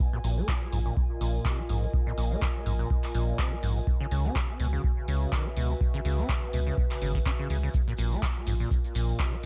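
An echo-heavy digital ambience surrounds this gritty, trippy acid house excerpt at 124 BPM with a light 16th-note swing: a deep, up-front electronic kick and a round sine sub bass anchor a squelchy, resonant overdriven saw acid riff carrying analog delay and a filter sweep, while a dry, punchy analog drum machine adds handclaps and hi-hat, a dark, detuned lo-fi pad warbles through chorus and reverb with sidechain pumping shared by both basses, and a grainy, close shekere with analog delay slips in at 7.7 s over chords moving from Bb5 to Dbm7 and back.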